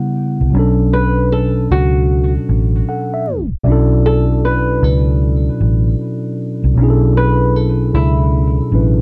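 A dark, round, foam-muted electric bass sits up front from 0.4 s, punchy and amped beneath a mellow, clean tine electric piano that carries cassette-tape grit and a low-pass filter as the chords move from a rootless A13 to Bm9. Over them, a fingerpicked flamenco guitar sings a nostalgic, melancholic melody with audible finger squeak, softened by a low-pass filter and set back in plate reverb and tape echo. This lo-fi hip hop fragment in B minor drifts at 77 BPM with swung 16ths, and a tape stop on the whole mix from 3.3 s hands off to a new section on Bm11 at 3.7 s.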